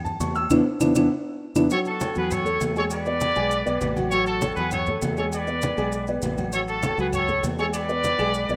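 Festive and danceable, this salsa passage, cut from a longer piece, moves with a straight four-beat pulse. A dark, boxy concert grand piano sits up front from the start, its mellow tone and deep bass featured in the opening, where a band accent and a drum fill lead into the next section. Underneath, a round, foam-muted fingered electric bass holds the low end. Grainy maracas sound close and dry, while low-tuned congas with a thick skin and ringing metal-shell timbales and agogo bells sit in the background of the percussion bed, the timbales sounding distant. Woody, saturated claves appear briefly near the top and again from 6.8 seconds. At 1.7 seconds a tight, clear trumpet section takes the melody up front with vintage vibrato and a pop-style polish, as the harmony rocks between A6 and E7. A lush plate reverb washes over this rough home demo mix.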